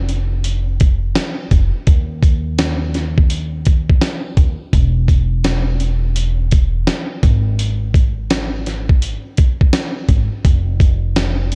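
Jazz-hop with a relaxed, smooth feel and a swung groove, cut from a longer piece. A woody, dark pizzicato upright bass sits up front from the start, joined at 0.1 seconds by a gritty, compressed sampler-style drum kit with a thumpy kick, fat snare and hi-hat, re-recorded in a large room. Light reverb adds a touch of space to the close, dusty sound.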